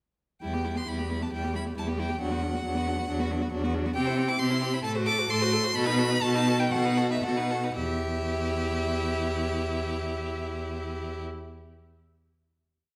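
A smooth, rich first violin carries the melody up front in this restless, urgent classical-period movement for string quartet in E minor at 112-139 BPM in 4/4, over a close second violin and a distant viola rocking two-note figures and sustained chords and a focused cello marking bass on the beats, the whole piece slowing from 3.1 s before a final chord arrives at 7.8 s in a reverberant recital hall.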